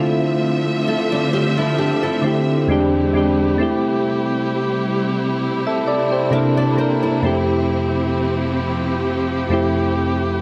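Bathed in a lush hall reverb, this late-night, sensual contemporary R&B fragment pairs soft, round electric-piano-like synth keys with chorus, up front, against a smooth, bowed studio string section holding sustained chords with vibrato, while a fingerpicked nylon-string guitar weaves delayed arpeggios until it drops out at 7.5 seconds, all over a swung progression of rich ninth, altered and thirteenth chords.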